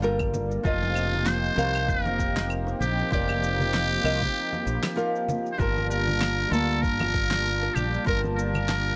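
A swung sixteenth-note groove at 97 BPM in 4/4 sets a smooth, wistful sunset chillout mood. An electronic shaker, claves and a fat snare ride on a deep, tape-toned electronic kick that enters at 0.2 seconds, while ringing congas and bongos, played with soft hands, sit close and dry in the background. A round, dark fretless electric bass with tube saturation anchors the low end. A small, fingerpicked nylon-string guitar and a thick, detuned sawtooth pad with chorus carry the harmony, moving from Gm9 to F7sus4 and back. From 0.6 seconds, a trumpet with a metal mute takes the lead up front, buzzy, raspy and growling with a vintage edge and analog delay. The whole passage, cut from a longer piece, has the dry, gritty feel of a hardware studio recording.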